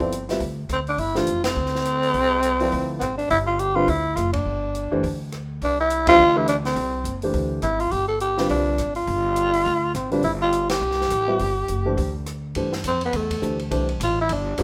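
An open, searching mood runs through this modal jazz excerpt, cut from a longer piece and swinging at 208 BPM in 4/4 over a G13sus4 chord in G mixolydian, tuned to A4 = 436 Hz. Up front, a growling tenor saxophone carries the melody with a breathy subtone, raspy grit, scooped notes and vibrato, along with soft attacks and a smooth top. Beneath it, a dark baby grand piano accompanies with mellow, short-sustained playing, while a pizzicato upright bass on gut strings adds a woody, thumpy foundation. A compact cocktail drum kit sits low in the mix, its hi-hat, ride, rim click, high-tuned snare and tight kick heard in a natural booth sound with dark cymbals. The full band hits accents at 1.4, 4.3, 6.0 and 10.7 seconds, and at 12.6 seconds the music moves into a new section where the saxophone takes a solo, all under a light reverb.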